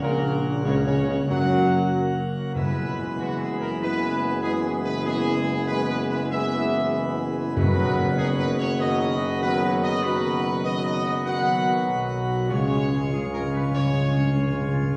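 Majestic and triumphant, this classical brass-and-organ passage at 96 BPM sets a dark, punchy trumpet section melody over sustained chords from a clear trombone section, dark French horns and a brilliant plenum pipe organ with baroque chiff, grounded by a mellow, roomy tuba bass and hard-mallet timpani that strike at 2.6 and 7.6 seconds before a fill from 12.5 seconds, all heard from further back in a reverberant concert hall as the harmony moves from F# through E/F# and B/F# to C#.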